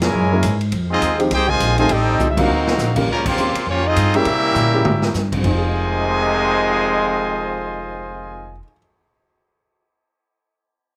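Brassy and sultry, this fast big band swing excerpt in F minor at 203 BPM sets an up-front, tight trumpet section with light vibrato carrying the melody over a brilliant trombone section on the second line, both touched by slapback echo, while woody pizzicato upright bass and a dark, intimate baby grand piano with audible action noise fill out the dry sound, and a distant, roomy drum kit with a boomy kick plays fills at 2.2 and 4.6 seconds before dropping out at 5.5 seconds.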